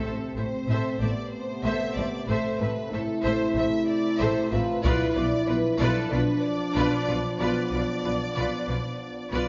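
Heard through a moderate scoring-stage reverb with a dark, rounded top, this brief cut from a dramatic, relentless epic orchestral film score moves at 94 BPM in A minor, opening on a full-ensemble accent and shifting from Amadd9 to Bdim at 4.8 s. Lush bowed violins carry a focused melody set back in the mix with a second violin line beside it, close-sounding violas fill in the accompaniment, and mellow French horns and punchy, clear trombones hold sustained chords. Rich cellos and woody double basses anchor the bass, while a taiko ensemble struck with heavy sticks in a small room bursts in from 4.8 to 6.1 s.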